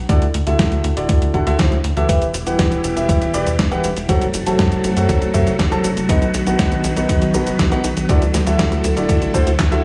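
Melodramatic and bittersweet, this italo disco passage moves at 120 BPM in a straight 4/4, cycling through Dadd9, Em, F#dim and B over a tight, punchy sawtooth sequencer bass with a filter pluck and tube saturation, and a thumpy electronic kick. A clean 12-bit drum machine adds cabasa, handclaps, hi-hat and a medium-tuned snare with gated reverb, while up-front concert grand piano stabs carry a deep low end and tape echo. A swirling vintage string machine enters at 2.1 s with bright, slow-blooming chords treated with ensemble chorus and phaser, and a drum fill lands at 9.6 s, all set in a light studio reverb.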